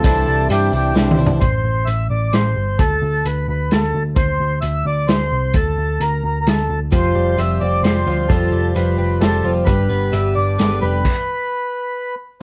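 Jangly, warm folk and heartland rock in 3/4 opens with the full band at once, led by a reedy, rich accordion melody up front over a bright, clean twelve-string electric guitar riff, a shimmering, octave-doubled twelve-string acoustic in the background, a very quiet, woody upright piano, a barely audible, flute-like organ through a fast rotary speaker, a jingly tambourine, a dark, round hollow-body bass and a muffled vintage kit with a punchy kick; a drum fill at 1.0 seconds leads into a new passage where the guitars and piano drop away and rejoin at 6.9 seconds, and the rhythm section stops at 11.1 seconds to leave the accordion alone, all under light reverb and a worn, warbly cassette-tape pitch drift.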